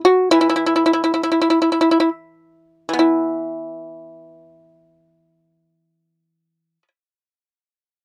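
A close, dry 1970s-style studio sound with light reverb frames this short, serene and pastoral fragment of Chinese traditional music, in which a solo acoustic pipa, bright, percussive and up front as it is played with fingerpicks, moves freely in rubato, slowing over the first 3.0 seconds and then playing on until 6.9 seconds.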